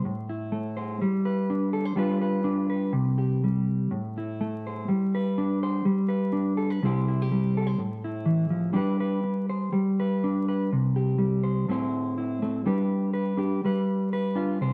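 A mellow, dark electric guitar plays alone from the first second: clean, fingered and up front, spanning A2 to C5 with a spring reverb. The warm, danceable highlife sits at 124 BPM in a straight 4/4, tuned to A4 = 436 Hz. Its chords move through Am, G, G7 and C before a new section begins at 11.7 s, all within a wet studio room and a layer of vinyl crackle, in this short cut from a longer piece.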